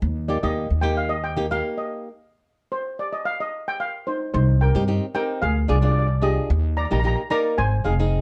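A shimmering steel pan, played with soft rubber sticks, carries the melody and takes a solo over the opening, including a stop-time break from 2.2 to 4.3 seconds before the harmony moves on. Alongside it, a boxy fingerpicked flamenco guitar with audible finger squeak and a woody, thumpy pizzicato upright bass on gut strings keep a straight calypso groove. The excerpt has a festive, sunny mood, with a dark production and light reverb.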